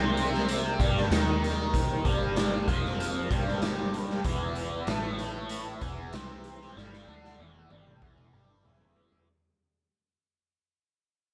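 A biting, double-tracked overdriven guitar riff opens this psychedelic rock excerpt at 0.0 s, sitting up front with a phaser coloring its bright, picked tone. Alongside it from the start, a picked electric bass plays underneath with a round, foam-muted, direct sound, and a tonewheel organ holds sustained chords in the background, clean and clear with key click, chorus vibrato and a slow rotary speaker. A raw garage drum kit joins at 0.2 s: a punchy kick, a medium-tuned snare, hi-hat and toms, saturated and gritty with a rolled-off top, captured in a stone room and placed up front. The mood is hypnotic and mysterious, moving in a straight 4/4 at 96 BPM from G minor toward an E5 chord at 4.3 s, with the band tuned to A4 = 443 Hz. A drum fill starts at 6.8 s, the whole excerpt fades out throughout, and light reverb conveys a band playing live together in one room.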